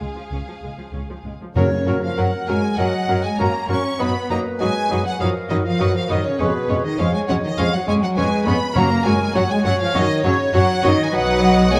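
A quick, graceful and lively classical-period orchestral movement, cut from a longer piece, opens with strings: a lush violin section carries the melody over a focused second violin line, very quiet, distant violas, expressive cellos and soft-edged double basses. At 1.6 s the winds and brass join, with an airy flute ensemble, mellow cor anglais and smooth clarinet adding second lines, a warm bassoon in accompaniment, and dark, roomy French horns holding sustained chords, while hard-mallet timpani land articulate, dry strokes at 1.6 s and 8.8 s. A moderate scoring-stage reverb surrounds the ensemble.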